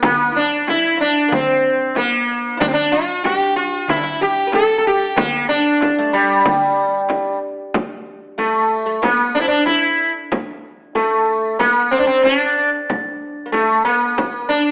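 A straight 4/4 pulse at 93 BPM drives this festive, passionate excerpt in G maqam rast, where a buzzing, shimmering sitar carries the melody up front over a woody, fretless oud second line, a deep frame drum played with hard hands, and a small, high clay darbuka in the background that drops out at 7.3 s, all set in a recital hall reverb with an AM radio sound.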